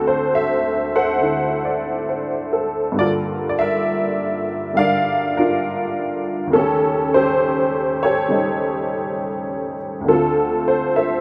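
A lone honky-tonk upright piano opens this short solo jazz excerpt, its detuned, jangly voice sitting up front with a bright, vintage edge. The playing swings at an unhurried pace with a warm, easygoing mood, moving through D7, Gm7, Eb7#11 and settling on Dm7 near 10.1 seconds. A light reverb gives the room a touch of air around the instrument across the full 11.2 seconds.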